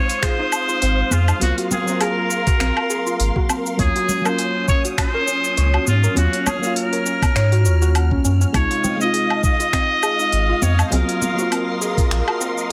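A nasal, straight-muted trumpet carries the melody with digital delay over a dark FM electric piano bathed in chorus and phaser, silky string-machine chords and soft, round arpeggiated plucks in this smooth, swung sunset chillout excerpt, as a tape-tinged smooth R&B kit of hi-hat, finger snaps, cabasa and woodblock, a knocking electronic kick, a deep, up-front sub bass arriving at 0.8 seconds and background congas fill out the groove before an airy, wind-like noise texture drifts in at 10.3 seconds.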